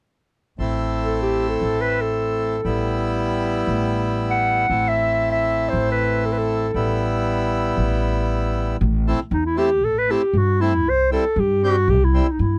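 Close, dry 1970s-style studio sound with a light touch of reverb frames this festive yet bittersweet klezmer fragment from a longer piece, where a reedy, hollow accordion and a dark, woody pizzicato upright bass on gut strings sit up front beneath a warm, classical-style solo clarinet that enters at 1.0 seconds, pauses at 7.1 seconds and returns at 9.3 seconds to carry the melody.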